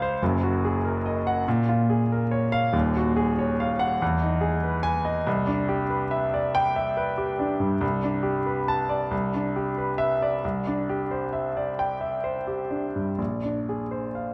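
A dark, intimate recording places a grand piano up front in a wet recital hall, where the reverb lingers for about 1.7 seconds and the action noise stays audible. This short impressionist solo piece, cut from a longer work, moves in a slow, rubato 6/8 at roughly 41-49 dotted-quarter beats per minute, and its mood is hazy and serene. The piano's tone is clear and present, with a long sustain that lets its lush harmonies blur gently into the room, spanning from a deep Eb1 up to A5. It opens drifting through Gb69, Bbm7, Ebm11 and Emaj7 before settling into C major at 5.3 seconds on a Cmaj9. From there the harmony glides over a C bass through Am11/C, Em7/C and Cadd9, then turns to Bb9 at 13.2 seconds as the fragment closes at 14.3 seconds.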